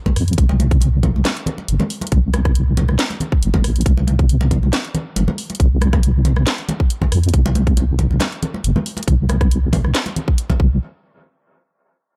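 A half-time groove at 138 BPM with a light 16th-note swing drives this meditative, heavy deep dubstep excerpt, where a tight, layered electronic kick sits up front beside a garage kit of cracking snare, handclaps, hi-hat and rim click, bright, hard-handed congas trail dub echo, and a dark, detuned sawtooth-and-sine wobble bass, compressed and thickened with chorus, fills the low end until the parts fall away around 10.8 s, all captured in a dry, gritty hardware sound with transformer saturation and little reverb.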